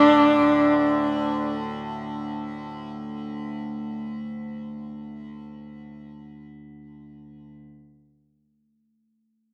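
Recorded outdoors with light reverb, this devotional, radiant fragment of Indian classical music opens with an up-front bowed sarangi, warm and expressive, singing a smooth, gliding phrase with light vibrato, portamento and a slapback echo for its first 1.5 seconds over a bright, softly plucked, buzzing tanpura drone that shimmers on alone until 7.5 seconds.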